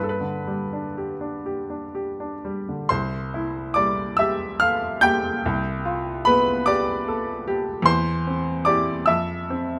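The music drifts in a rubato 6/8, pulsing slowly at 39-50 beats per minute counted in dotted quarters, as this short passage of a romantic classical nocturne unfolds for solo piano in C major. A clear baby grand carries everything alone from 0.0 to 9.8 seconds, its natural tone sitting up front with a short sustain and spanning the keyboard from C2 to G6. The mood is serene and tender, opening on a G chord before settling onto C at 2.9 seconds, where a second section begins. The harmony then moves through G7 over a C bass and C over E, closing on a rootless D minor seventh over F at 9.1 seconds. Close, detailed microphones and light reverb keep the sound intimate, capturing the instrument with quiet precision as the fragment breaks off.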